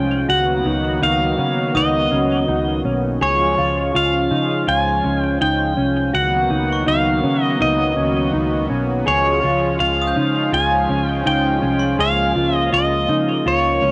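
Dreamy and ethereal, this dream pop excerpt drifts at 82 BPM in a straight 4/4 over chords centred on Db, with an up-front, fingerpicked pedal steel guitar carrying the sliding melody with volume swells through cassette tape, plate reverb and analog delay, while a smooth, detuned sawtooth pad holds soft-attack chords, a dark, clean electric guitar plays fingered arpeggios under analog chorus and delay, a foam-muted, round electric bass anchors the low end, and a bright, sparkling glockenspiel struck with brass mallets rings in the background until 12.3 seconds, all captured as a home cassette recording in a modest booth ambience.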